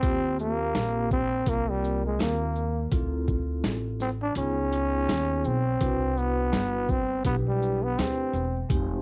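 Mellow and cool, this swung jazz-hop excerpt puts a raspy, breathy growling trombone up front for a solo full of scooped notes and vibrato, over airy vibraphone accompaniment played with soft mallets and a slow motor vibrato, a woody, dark pizzicato upright bass, and a pitched-down, gritty boom bap kit of thumpy kick, snare, hi-hat and shaker whose kick drops out from 4.4 to 5.8 seconds, with cassette-tape coloring on the trombone, vibraphone and drums, vinyl crackle throughout, and a dry, intimate home-recorded feel.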